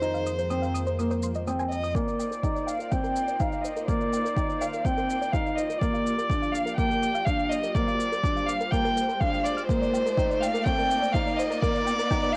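Piano and strings electronica in C minor at 124 BPM, cinematic and moving, cut from a longer piece: a rich, focused solo violin carries the melody up front over a felt-muted upright piano riff with audible action noise, lush sul tasto string chords in the background, and a soft, nasal pluck playing arpeggios with chorus and tape echo, while overdriven electronic shaker and toms run throughout. A deep, beating detuned saw bass rumbles only until 1.9 s, when a punchy overdriven kick enters, and from 2.0 s the track builds, with a filter sweep on the violin and a riser from 3.3 s, over Fm7, Cm11 and Gm7 chords. The strings, pluck and bass carry a sidechain pump, and the whole mix carries the worn, homespun colour of a cassette recording in a moderate room.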